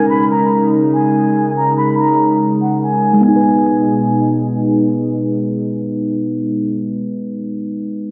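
A dark, eerie half-time hip hop fragment opens with a close-miked silver concert flute carrying a breathy, unsteady melody up front, over muted, felt-like synth keys and an airy, detuned pad holding sustained chords, all set in a dreamy mix soaked in lush hall reverb while a filter sweep runs through the first 3.2 seconds. The harmony moves from a suspended D#7sus4 to a minor G#m at 3.2 seconds, and the flute, softened by low-pass filtering and delay, stops at 4.5 seconds. The chorused pad lingers until 7.0 seconds, leaving the intimate, decaying keys to close the fragment.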